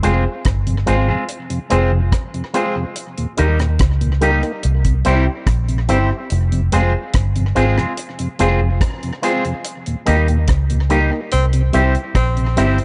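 Opening at once with a deep, dry reggae drum kit of hi-hat, kick drum and rim click, a round, foam-muted fingered electric bass up front, a clean picked electric guitar through an envelope filter with dub echo, woody, slightly detuned upright piano stabs and a mellow tonewheel organ turning on a slow rotary speaker in the background, this meditative, serious roots reggae excerpt moves through F minor, E-flat and C chords until a band accent at 9.6 seconds and a smooth tenor saxophone with light vibrato entering on a single note at 11.3 seconds.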